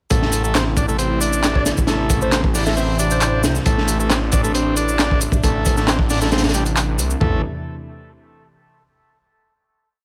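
A gritty, saturated breakbeat kit sits up front in a small room, its dark, rolled-off top and high-tuned snare giving this short, funky breaks piece a raw, crunchy edge. The looped, edited break runs throughout with a tight kick, hi-hat and toms, while a dry analog machine layer of shaker and handclaps rides over it. Underneath, a thick, detuned saw bass, treated with phaser and tube saturation, pushes long gliding notes, and a vintage, buzzy combo organ repeats a 16-step sequenced riff through 12-bit sampler grit and dub echo. A bright, swirling analog pad holds sustained chords in the background, pumping against the beat with phaser and chorus. From 1.6 to 3.6 seconds a catchy square-wave unison lead slips in with short phrases, thinned by a telephone filter and trailed by dub echo, before the drop gives way at 7.2 seconds to a closing chord.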